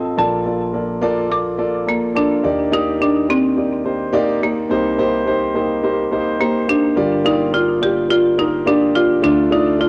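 A buzzing, woody, vintage marimba struck with hard mallets carries the melody through a band-limited haze of cassette tape and analog delay, while an up-front concert grand piano with deep bass supplies the accompaniment in this nostalgic, dramatic pop excerpt at 106 BPM with a light sixteenth-note swing, its Bbmaj7, Ebmaj7, Cm7 and Gm7 chords settling on Dm at 9.2 seconds inside a moderate spring reverb that surrounds the home cassette recording.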